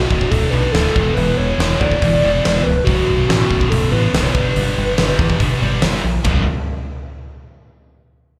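A warbling, vintage-toned lead with chorus, vibrato and slapback and tape echo carries a nostalgic melody over two scooped, distorted electric guitar riffs and a growly, punchy picked bass in this menacing, driving hard rock excerpt in B minor at 141 BPM. A huge arena drum kit, with a fat snare, punchy kick and bright cymbals, sits up front from 0.1 seconds, while the guitars stay in the background and the harmony moves through D, E5, B5 and G. The whole sounds like a live gig heard through a club PA with light reverb, and the lead drops out at 5.8 seconds before a new section arrives at 6.3 seconds.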